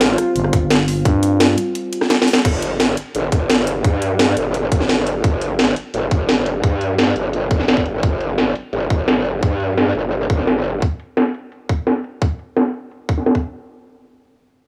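A growling, formant-filtered bass wobbles up front through most of this tense, mechanical slice of dark technical drum and bass, arriving in earnest at 2.4 seconds with saturated bite, chorus and sidechain pumping, after a thick FM bass growls briefly beneath the opening drop. That drop is shaded by an evolving, detuned sawtooth pad holding sustained chords with a slow filter swell, until a drum fill closes it out at 2.4 seconds. Throughout, a tight, overdriven electronic kick and a layered kit with a cracking snare and bright hats sit close and dry in a studio ambience, with a filter sweep running across the drums from 2.4 seconds onward.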